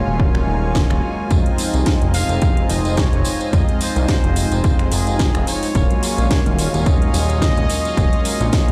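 Played back through a big sound system in a bare room with a large studio reverb, this cosmic, sleek nu-disco excerpt moves at 108 BPM in 4/4 with a light 16th-note swing, in E-flat dorian over Ebm11, Fm7 and a return to Ebm11 at 5.8 s. A fat, detuned, wave-folded analog bass sits up front with sidechain pumping, while an overdriven, punchy electronic kick and a house kit of finger snaps, metallic hi-hats and a cracking snare drive the groove. A band-limited vintage tambourine joins at 1.3 s, and a smooth, chorused analog pad and a floating, pumping chamber string section played sul tasto hold the harmony throughout, while a warm trumpet section with light vibrato and digital delay takes the melody from 2.1 s.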